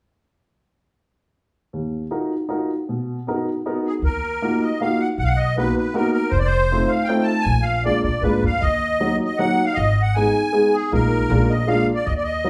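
A lush, roomy studio ambience surrounds a band playing live together in this fragment of a whirling, nostalgic musette waltz with a gentle swing. An intimate upright piano, its woody tone carrying audible action noise, opens alone at 1.7 seconds, and the reedy, shimmering musette accordion takes the melody from 3.9 seconds, joined at 4.0 seconds by a growly, thumpy pizzicato upright bass on steel strings. All three sit up front as the harmony moves from Ebmadd9 and Bmaj7 through F7 and Bb7 to Ebm and Abm, closing on a Bb7sus4 that resolves to Bb7.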